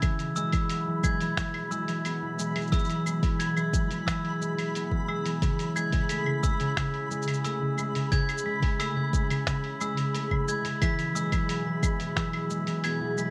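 A light reverb surrounds this short folktronica excerpt, and its mood is playful and pastoral in a steady, straight four. Up front, a concert harp plucked with the thumb rings out warm arpeggios through a tape echo, while a warbling, nostalgic pad holds detuned sustained chords beneath it, softened by chorus and its own reverb. From 0.4 seconds a glockenspiel struck with rubber mallets carries a mellow, bell-like second line, close-miked and dry apart from a delay. A deep, tape-warm electronic kick drum anchors the groove until 12.3 seconds, alongside a muffled, pitched-down, sampler-style kit of cabasa, claves, finger snaps and hi-hat. Quietly beneath it all, a grainy, flickering granular texture hovers on a single high note, and the harmony moves from Eadd9 to Amaj7 and back.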